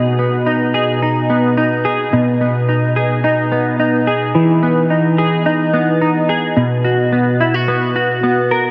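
Ethereal and blissful, this short dream pop excerpt cut from a longer piece moves at a straight 108 BPM in 4/4 in B major, with a solo semi-hollow electric guitar, clean, fingered and compressed with analog chorus and delay, sitting up front in a huge ambient reverb as it moves from B6 to Emaj7 at 4.3 seconds and settles on B5 at 6.6 seconds.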